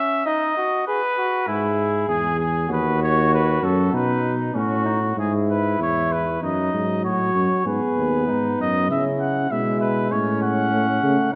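A trumpet with a vintage, up-front tone carries the melody from the opening moment, joined by a mellow, far-off flugelhorn on a second line in this elegant, joyful classical canzona for brass ensemble, written in an imitative style. At 1.5 seconds a tuba enters on the bass, roomy and lightly vibrato-tinged yet still close in the mix. The trombone arrives at 6.4 seconds as the piece moves into its second section, adding dark, soft-edged accompaniment with a smooth top and a touch of vibrato. The harmony opens on bright major chords before turning toward minor colours in that later passage. A concert hall reverb surrounds the group with a wet, spacious glow, and the recording is cut from a longer piece.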